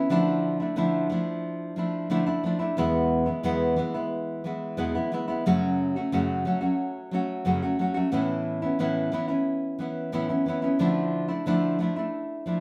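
Set in a moderate, roomy studio reverb, this carefree yet heartfelt 12.6-second pop excerpt at 90 BPM features a solo nylon-string guitar, full-bodied and up front, fingerpicked with audible finger squeak as it moves through Dmadd9, E, F#m and Aadd9 before returning to Dmadd9.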